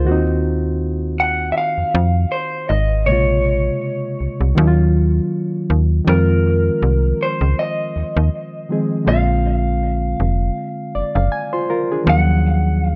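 Swung sixteenths at 80 BPM carry this soulful, late-night neo-soul piece in Eb dorian, where a snappy, metallic FM bass and a barky, reedy electric piano with spring reverb sit up front from the start. A slightly broken-up, lo-fi electric guitar through a small old amp enters at 1.2 seconds with a melody wrapped in analog delay, the piano adds a fill at 10.6 seconds, and the chords move from Ebm69 through Fm7 and Bb9 to Ebm9 in an echo-heavy mix.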